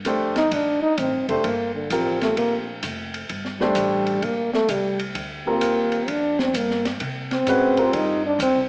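Upright bass and an open jazz drum kit start together, the bass plucked and woody with a thumpy steel-string tone, the drums dark and smooth with a high-tuned snare, dark cymbals and a rolled-off top on hi-hat, ride and snare. This is a searching, spiritual stretch of modal jazz in 4/4 with swung eighths, cut from a longer piece. A warm, natural grand piano comps in its middle register, and from 0.4 s a breathy trombone sits up front as the soloist, dark and jazz-styled with light vibrato and a smooth upper edge. The harmony rests on a Gm9 chord before shifting to C7 at 7.0 s. A moderate scoring-stage reverb gives the small ensemble some air, while the overall sound has the narrow character of a small speaker.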